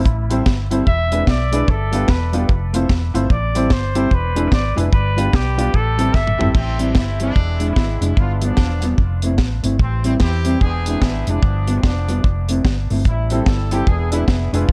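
An energetic, driving ska cut opens with a breathy, whispered trumpet solo carrying the melody over a dub echo, its soft attack and vibrato giving it a vintage, intimate pop character. Beneath it, a round, punchy hollow-body bass sits up front with a deep reggae drum kit whose high-tuned snare, tight kick and dark cymbals sound dry and close, while a clean hollow-body jazz guitar supplies dub-echoed accompaniment. A bright upright piano adds woody stabs with audible action noise and long sustain, cycling through minor-seventh and dominant-seventh changes in a swung eighth-note feel. A drum fill at 6.1 seconds hands the melody from the trumpet to a distant, roomy horn section with light vibrato and its own echo, and the piano drops out until it returns at 13.3 seconds. Small room ambience frames the whole piece, which is cut from a longer performance.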